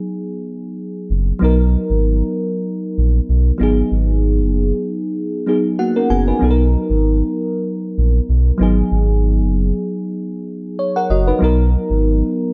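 A dry, close sound frames this joyful, romantic afrobeats passage cut from a longer piece, with a lightly swung 4/4 groove moving between G#m7 and Bmaj7. A bell-like, sparkling FM electric piano carries the chords from the start, its mellow, decaying tones coloured by chorus and phaser and played with a short fill at 5.5 seconds before the second half begins at 6.4 seconds. Entering at 1.1 seconds, a deep, full sub bass doubled at the octave sits up front with a sustained, rounded body beneath the keys.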